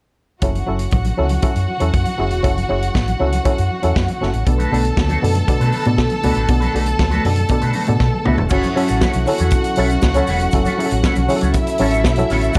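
A dark, dry production with little reverb frames this danceable, driving disco excerpt at 119 BPM in F# minor, moving from F#m7 to Bm7 and back. A vintage acoustic drum kit sits up front with a punchy kick, a medium-tuned snare and dark cymbals. It is joined by a round, amped fingered bass and a muted, stringy clav heard through a combo amp, while a lush studio violin section, bowed with vibrato, carries a smooth second line above them. Distant, damped congas played with soft hands sit very quietly in a large room. At 4.5 seconds an electric guitar with an envelope filter and analog chorus adds clean, picked accompaniment, and a mellow, flute-like tonewheel organ with key click and percussion holds sustained chords in the background under subtle chorus. A drum fill leads into 8.5 seconds, where a grainy, bright tube shaker joins at the back of the mix.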